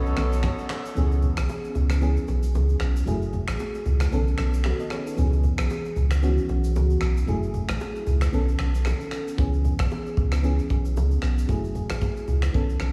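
A soft, round synth lead and a clear, vintage horn section open this sultry, smooth afrobeats excerpt in C# minor at 114 BPM for only its first 0.7 seconds, over a lush, dreamy FM electric piano with a soft pad layer, a deep sine-toned sub bass up front, a dry, damped 70s drum kit of finger snaps, handclaps, rim click, shaker and a tight kick that is muted from 1.0 to 9.4 seconds, and close, acoustic bongos and congas in the background, all swinging gently on the 16ths through a C#m7, F#m9 and B9 progression in a small, lightly reverberant room.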